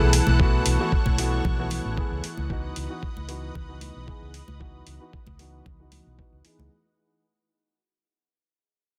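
A dense, heavily limited modern mix with light reverb carries this short, fading nu-disco excerpt in C# minor at 114 BPM, groovy and sleek, with a 16th-note swing moving from B7sus4 to C#m11. A lush, detuned sawtooth pad with chorus and a clear, worn grand piano under tape echo both pump against the sidechain, while a filter sweeps across the piano and a round, punchy hollow-body electric bass with tube saturation holds the low end. A gritty, thumpy electronic kick joins a compressed electronic hi-hat at 0.4 seconds, and close, dry congas sit in the background.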